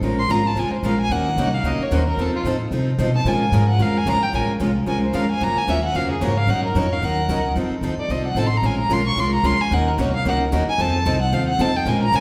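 Bittersweet and swinging, this fragment of acoustic string swing in Bb minor at 223 BPM sets a warm violin solo, full of vibrato and portamento with a soft attack and smooth top, over two bright, picked steel-string acoustic guitars (one boxy, both with audible finger squeak) and a woody, growly pizzicato upright bass sitting up front, all carried by the lingering reverb of a recital hall through a minor progression that touches Gbmaj7 at 5.4 seconds.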